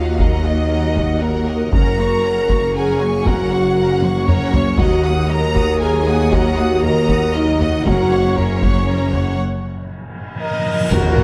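A huge, bright impact opens this dramatic, relentless excerpt of epic orchestral film score in 3/4 at 118 BPM, moving between E-flat minor and G-flat major as lush bowed violins carry the melody over a second violin line, vibrato-laden violas, focused cellos, woody double basses, a soft-attack tuba and mellow, distant French horns holding sustained chords. Heavy-sticked taiko drums drive from 0.2 seconds with fills along the way, dark cymbals and tam-tam arrive at 7.8 seconds, and a break at 9.4 seconds brings a timpani fill before dark trumpet stabs and a final impact land as a band accent. A moderate scoring-stage reverb gives the brass a roomy depth while the timpani and cymbals sit close and dry.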